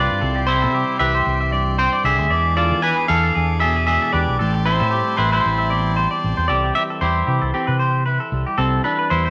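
A twangy lead guitar carries the melody up front in this sunny, danceable highlife excerpt, its picked lines ringing with a slapback echo. The piece moves at 115 BPM in 4/4 in C major, with a light swing on the sixteenths, and the harmony travels from C through E7 and Am7 before returning to C at 6.5 seconds. Beneath the lead, a bright, clean second guitar plays picked arpeggios, also treated with slapback, while a dark, slightly broken-up guitar adds fingered accompaniment lower down. A round, punchy fingered bass sits prominently in the mix with an amped, warm tone. A buzzy, overdriven vintage combo organ holds sustained chords in the background until it drops out at 6.5 seconds, and a moderate echo-chamber reverb gives the whole band a roomy glow as this fragment of a longer piece runs to 9.3 seconds.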